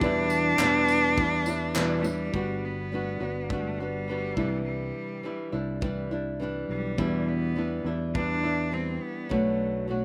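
Acoustic pop in E minor at 103 BPM with a lightly swung sixteenth feel, this wistful, reflective passage is cut from a longer piece and moves through Em7, Gmaj7 and Cadd9, back to Em7, before settling on Bm7. A focused, boxy bowed cello carries the melody up front with vibrato, over a small fingerpicked nylon-string guitar touched with slapback echo and a punchy, direct fingered electric bass. A woody upright piano sits very quietly beneath until 2.4 s, while a studio drum kit with a pumping room sound adds a punchy kick, handclaps and tambourine, all in a dry, close mix.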